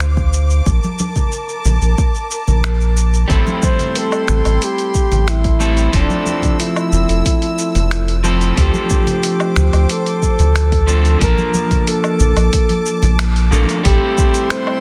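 A breathy, dark flugelhorn carries the melody from 3.6 seconds in this wistful sunset chillout excerpt at 91 BPM in A phrygian, its vibrato and scooped notes touched by tape echo, while an electric guitar at the edge of break-up adds picked, scooped accompaniment with its own tape echo. Underneath, a round analog bass sits up front with a deep, nasal filter pluck, joined by a deep, layered electronic kick, a gritty, dusty sampler-style kit of finger snaps, hi-hat, shaker and woodblock with soft clipping on the snare, and ringing congas in the background. A dark chamber string section holds soft, sul tasto chords over a Dm7, Bbmaj7, Am7 and Fmaj7 progression, with a band accent at 13.2 seconds in a dense, heavily limited mix with light digital ambience.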